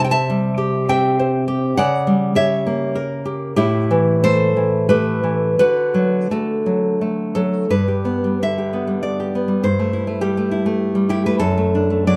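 Captured live in one room with light reverb and some lossy compression artefacts, this brief cut from a longer romantic piece features a solo nylon-string guitar, fingerpicked and up front, with a full-bodied, fresh-stringed classical tone. In three-four time with a free rubato feel, the warm, nostalgic music moves through chords such as Am7/C and C#dim7 in its opening section, then shifts into a second section at 7.7 seconds that begins on G and reaches D/F# by the end at 12.2 seconds.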